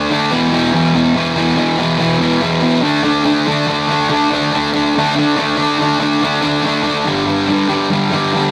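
Rock at 142 BPM in 4/4 with a straight feel, raw and rowdy, this short cut from a longer piece features a lone fuzz guitar, bright, picked and double-tracked, sitting up front from 0.0 to 8.5 seconds across a range of E2 to D4. Its distorted power chords move through E5, D5 and G5, with the shift into a new section arriving at 3.7 seconds. The sound has a rough rehearsal-room character with warm saturation and a moderate studio reverb.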